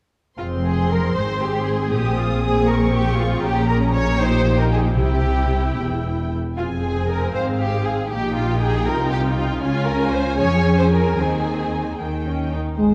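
Swaying in a rubato 6/8 at 73-80 BPM by the dotted quarter, this dramatic, restless F minor excerpt from a quick classical-period orchestral movement sets dark, portamento-shaded first violins singing the melody over a rich, soft-edged second violin line, lush violas, close, even cellos and up-front, expressive double basses, all with vibrato, as the harmony moves from Fm through Bbm and C before settling on Eb, and a mellow, distant French horn chord arrives only at 12.8 s, everything held in a moderate scoring-stage reverb.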